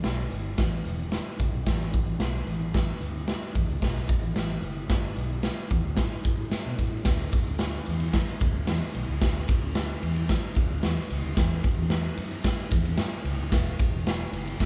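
Captured live in one room with light reverb, this joyful, uptempo 1960s-style soul cut at 111 BPM pairs a gritty, saturated garage drum kit, placed up front with a punchy kick, medium-tuned snare, hi-hat and ride sounding in a bright, pumping stone room, with a dark, round, foam-muted fingered electric bass sitting lower in the mix, both playing throughout as the music moves into a new section at 7.1 seconds.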